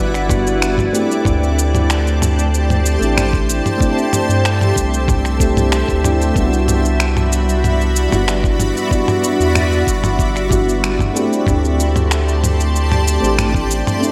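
A 94 BPM straight 4/4 groove from a gritty, compressed sampler-style kit of finger snaps, shaker and toms and a thumpy electronic kick underpins this warm, sunny sunset chillout excerpt, where soft, mellow electric-piano-like synth keys sit up front with chorus, phaser, tape echo and slapback echo, a shimmering, ethereal pad holds bright detuned chords with an octave-up sheen, a round, deep analog bass anchors the low end, a barely audible downlifter ends by 1.3 s, and the harmony drifts between Cmaj9#11 and D7sus4 in a big, arena-like concert hall space.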